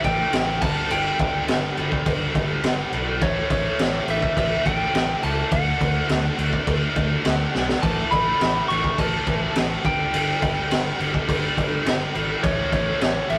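Hard rock with a menacing, aggressive edge, this short excerpt in straight 4/4 sets a bright, twangy, lightly driven lead guitar melody over a double-tracked, high-gain distorted riff sitting in the background, with a punchy fingered electric bass underneath. Up front, a raw garage drum kit with a high-tuned snare, punchy kick and crash cymbal sounds gritty and mid-forward with a rolled-off top, and it breaks into a drum fill at 7.5 seconds. The harmony moves between A5, G5, A and D, and the whole take has the rough, saturated feel of a rehearsal room with light reverb.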